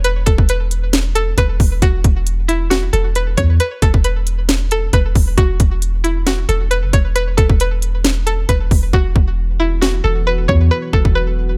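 A twangy, string-like resonator pluck carries the melody with chorus, low-pass filtering and delay over a deep sine 808-style bass and an electronic, up-front trap drum kit with a hard-clipped kick, sharp snare and crisp hats, setting a wistful, dreamy half-time trap groove at 135 BPM on Esus2; the hi-hats drop out at 8.9 seconds, a moody, detuned ambient pad with chorus and its own reverb enters at 9.5 seconds, and the drums stop at 11.1 seconds in this short, fairly dry excerpt.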